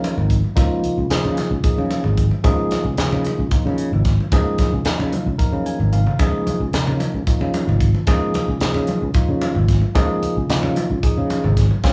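Funky and bright, this electric jazz fusion excerpt moves at 224 BPM counted in eighths, in an odd 7/8 metre with a straight feel, resting on a single Db69 chord in Db major. A tight funk drum kit sits up front with an acoustic, small-room character, a high-tuned snare and a tight kick alongside the hi-hat. A growly, amped fretless electric bass sustains its notes beneath, also up front and every bit as prominent as the drums. Clean, direct, bright tine electric piano glimmers in the accompaniment, while congas add hard-handed, damped, thin-skinned hits with a vintage, band-limited tone further back in the mix. Around 5.4 seconds the electric piano slips in a short fill, joined by a drum fill at 5.5 seconds, and the whole band sounds as if playing live together in one room wrapped in a moderate large studio reverb.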